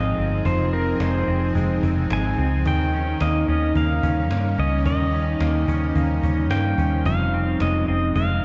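A shimmering, granular pad sounds from the first moment of this melancholic, ethereal dream pop excerpt in F minor at 109 BPM. Alongside it from the start are a clean, bright semi-hollow electric guitar playing arpeggios through analog chorus and digital delay, and a round, foam-muted vintage fingered bass sitting up front. A clean pedal steel guitar, played with fingerpicks and a slide, carries the melody through digital delay. The pad's octave-up shimmer and warbling chorus give it a vintage, sine-like glow with a slow attack and long release. A snappy cajon with snares enters at 0.5 seconds, sounding distant and set in the background of a large room. The harmony moves from Fm7 to Eb7 and back to Fm7 at 7.1 seconds, all within a dark production washed in a wet concert hall reverb.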